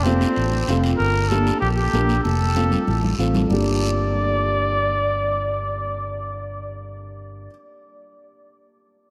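A breathy, vibrato-laden trumpet carries the melody up front over an amped fingered electric bass from the first moment of this passionate, danceable cumbia excerpt, joined by a dark, woody upright piano with audible action noise, ringing high-tuned congas, a raspy guiro and very quiet metal-shell timbales that drop out by 1.0 s, with a drum fill arriving at 2.2 s before the congas and guiro fall away at 3.6 s, all of it set in a vast, echoing cathedral reverb.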